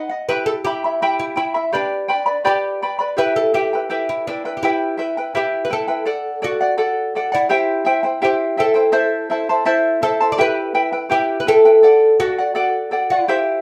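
Andean folk in E minor at 83 BPM in a straight 2/4, this melancholic, earthy excerpt pairs a woody, plectrum-plucked fretless oud carrying the melody between D4 and D5 with a shimmering, fingerpicked charango accompanying higher up, both double-strung and placed up front for the full 13.6 seconds. The opening section circles Em and G, then at 6.1 seconds the harmony moves through D, C and Am before settling back toward Em and D. The two players sound live in one studio room with a moderate ambience.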